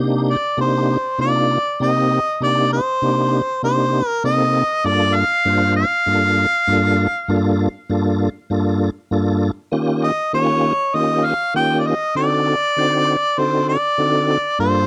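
Brooding and smoky, this 98 BPM minor-key blues, cut from a longer piece, sets a full, lightly overdriven tonewheel organ with chorus vibrato and a slow rotary speaker under Cm9, Gm9, Eb7 and D7b9 chords, while a warm, overdriven harmonica enters at 0.3 seconds with a jazz-style solo of scooped notes, light vibrato and a smooth top, both parts up front in a dry, close 1970s-style studio sound.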